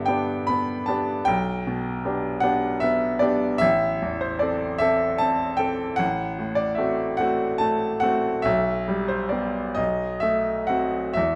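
A bright grand piano plays alone throughout this romantic nocturne, its brilliant, natural tone sitting up front in the sound. The mood is yearning and wistful, with the music moving slowly at around 43-52 beats per minute in 6/8, counted in dotted quarters and shaped with free rubato. The piano spans a range from A1 to B5, and the harmony opens on G before passing through G/B, A minor and F#dim/A, then settling toward Em/B and a bare B5 near 9.8 seconds. A moderate stone-room reverb, with a decay of about 1.3 seconds, surrounds the instrument with a sense of space. This 11.4-second passage is cut from a longer piece and presents a single section of the nocturne.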